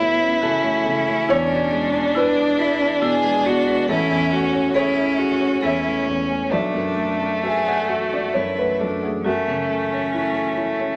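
A large studio's moderate reverb surrounds this fragile, longing neoclassical passage for piano and strings, cut from a longer piece and moving in a rubato 3/4 at around 68 BPM in F# minor. Up front, a single violin carries the melody with a warm, smooth and even bowed tone touched by light vibrato, while one cello plays a second line that sounds clear and intense, with vibrato and a smooth top. A felt-muted upright piano provides the accompaniment close to the listener, its soft, mellow and intimate sound flecked with audible action noise. Very quietly, a marimba struck with medium hard mallets on rosewood bars adds bright, woody, percussive arpeggios until it drops away at 10.7 seconds. The harmony drifts from F#m7 through E7, Amaj7 and Bm7 before settling back on F#m7 at 9.2 seconds.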